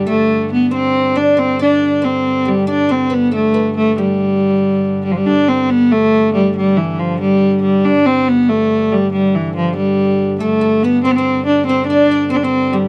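A dry, close 1970s-style studio sound with light reverb frames this festive, rustic medieval dance in 6/8 and G major, tuned to A4 = 437 Hz, moving at 93 BPM and speeding up across its 12.9 seconds. A dark, biting viola da gamba carries the melody up front, its bowed gut-string tone reedy with a smooth top and light vibrato. Behind it, a bright, woody oud plucks a second line, falling away at 5.0 seconds and returning at 10.4, while a pipe organ's nasal cornet stop holds a low drone with chiff and tremulant.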